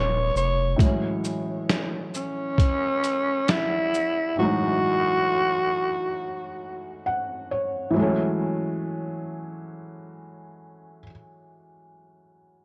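A growling tenor saxophone leads this hazy, reflective lo-fi hip hop passage, cut from a longer piece, with a breathy, raspy subtone, vibrato, scooped notes and a smooth top to its jazz-style solo line. Beneath it, a felt-muted upright piano plays soft, mellow accompaniment up front, its action noise audible and its tone dulled by a low-pass filter, as is the saxophone's. A deep, thick, saturated sine sub bass sounds only briefly at the opening, while a compressed, pitched-down boom bap sampler-style kit brings a gritty, thumpy kick, a medium-tuned snare, hi-hat and shaker on a swung feel before dropping out at 4.2 seconds. The saxophone stops at 7.0 seconds, leaving the piano alone until 12.6 seconds. Light reverb, a digital ambience and a cassette tape character give the recording an intimate, worn glow.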